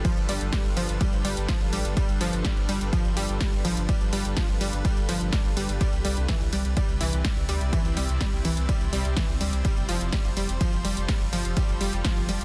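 A steady, straight 4/4 pulse at 125 BPM drives this hopeful, uplifting progressive house excerpt in G mixolydian, where a punchy, tape-warm electronic kick and a house kit of snare, hi-hat and ride anchor a deep, round sawtooth bass, a detuned analog pluck spinning delayed arpeggios through a filter sweep, and a shimmering, ethereal pad with octave-up granular sparkle sustaining chords from G7 to Cmaj7 at 5.8 seconds and Fadd9 at 9.6 seconds, the bass, pluck and pad all pumping against the kick in a dense, heavily limited digital ambience.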